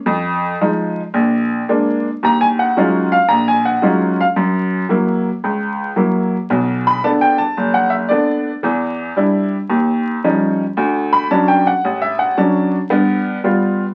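A bright upright piano carries this short solo jazz excerpt alone, playing from 0.1 to 13.8 seconds at 112 BPM in 4/4 with a swing feel on the eighth notes. Its tone is brilliant and woody, set up front and intimate, with the mechanical action audibly clicking beneath the notes. The mood is moody and smoky, with harmony moving through chords such as Fm7, Ebm11 and Gb7 before settling into B minor at 6.5 seconds, where a new section opens with Bm7, Em7 and Dmaj7 and closes on G7. The playing spans a broad range, from deep bass notes up into the high treble. The sound has the character of a very old 78 rpm record, with vinyl crackle running throughout and a wet studio ambience with a short decay around the instrument.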